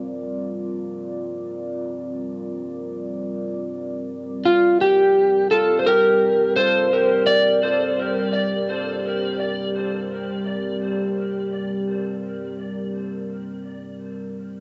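A dark ambient pad fades in from the opening moment, holding a sustained G minor chord with a slow attack and long release. Its tone is deep and moody, a sawtooth-and-sine blend thickened by a sub octave, ring modulation and chorus, with its own reverb. This is a meditative piece in free time, with nothing to mark a pulse. At 4.5 seconds an up-front electric slide guitar enters with a fingered melody in its upper-middle register, its slightly broken-up tone coloured by a cassette tape effect and trailed by dub echo. The guitar falls silent at 9.7 seconds, leaving the pad to carry on alone. A lush hall reverb surrounds the whole, and the homemade cassette recording softens the top end, which suits this short cut from a longer work.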